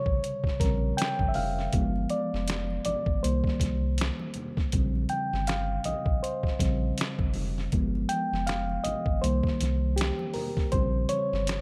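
A swung sixteenth-note groove at 80 BPM in 4/4 sets a late-night, soulful R&B and neo-soul mood in Bb dorian, and this short cut from a longer piece runs about 11.6 seconds. A sampler-style boom bap kit sits up front with finger snaps, hi-hat, a thumpy kick and a medium-tuned snare, its sound compressed, pitched down, gritty and tape-warm. Underneath, a deep, round sine sub bass holds sustained notes from F1 to C2 with a fast attack. The reedy, mellow electric piano carries the solo from the start, clean and up front as if heard through its built-in speakers, ranging from C3 to G5 over a cycle of Bbm69, G7b9 and Cm7. Very quiet acoustic congas ring from a distant large room behind everything else, while light reverb gives the mix a soft sense of space.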